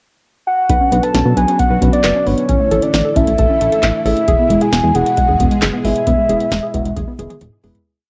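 A soft, round synth lead opens this short, bright and nostalgic synth-pop piece at 0.5 s, its octave-layered, chorused tone carrying vibrato and a slightly worn cassette-tape colour as it sings a motif-based melody up front. At 0.7 s most of the band arrives with a straight, punchy analog drum-machine beat of deep kick, snappy snare, handclaps, metallic hi-hats and toms, also tinted by cassette tape. Beneath it, a glossy, saturated chorused synth bass runs a sequenced line, while a vintage string-machine cello pad holds mellow sustained chords in the background. A detuned, wave-folded pluck ripples through arpeggios in threes with tape echo, and from 0.9 s muted, felt-like chorused keys add off-beat triads, all moving over a Bmadd9, A and E progression. The music begins to fade out at 6.1 s, and a drum fill from 7.0 s closes the piece, all set in a tight, booth-like home-recorded space.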